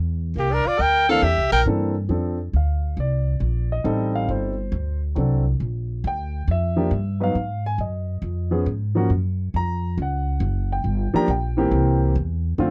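Small-group swing and bop jazz with a relaxed, easy feel, heard in a short excerpt cut from a longer piece. A woody, dark pizzicato upright bass runs throughout, while a clear, punchy trumpet with light vibrato and a bright tenor saxophone with scooped notes sound together only briefly, from 0.4 to about 1.7 seconds. A polished grand piano enters at 1.1 seconds and carries the harmony through to the end, all captured in a dry, close 1970s-style studio sound.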